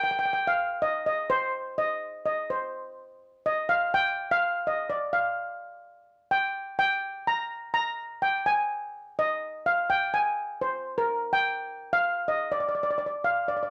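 A lone lead steel pan, struck with medium rubber sticks, opens this short calypso cut and carries it alone for its full 13.7 seconds, its metallic, shimmering tone sitting up front in a sunny, carefree mood. The playing moves over a straight pulse in the instrument's upper-middle register, and the airy sound is captured by close, detailed microphones with just a light touch of reverb.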